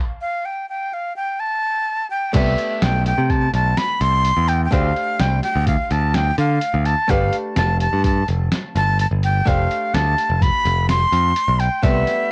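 A breathy, reedy metal flute with a chiffy attack and cassette tape echo opens this brooding, tense fragment of progressive instrumental music in 5/4, playing alone until the band enters at 2.3 seconds: a dark, clean hollow-body archtop guitar accompanies over Cmaj7, Dm7, G7 and F6, a punchy, up-front picked electric bass anchors the low end, and a muffled, overdriven sampler-style drum kit with a thumpy kick adds crash, hi-hat and snare, all captured as a lo-fi home cassette recording with light reverb.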